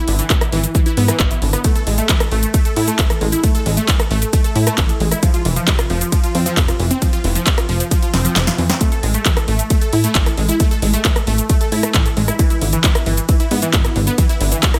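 Driving and euphoric, this uplifting trance excerpt rides a bright, detuned unison pluck playing arpeggios through phaser, delay and sidechain pumping over a funky, wave-folded analog bass that also pumps, while an up-front punchy electronic kick and a layered house kit of handclaps, hi-hat, ride, rim click, shaker and snare drive it along in digital ambience, with a drum fill at 8.1 s as the kick drops out briefly before the chords return to A5.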